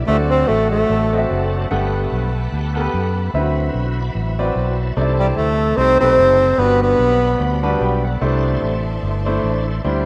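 A breathy, whispered tenor saxophone with tape echo carries the melody up front in this soulful, reverent uptempo gospel excerpt at 147 BPM with a swung feel in G major, alongside a clear, close-miked saxophone section in the background, while a bright tonewheel organ with key click and slow rotary speaker holds full chords and adds a fill at 3.7 seconds, distant, lush symphonic strings sustain in the background, an intimate, natural-sounding baby grand piano accompanies throughout with a fill at 7.4 seconds, and a round, amped fingered electric bass anchors the low end, in a rough home demo mix with light reverb.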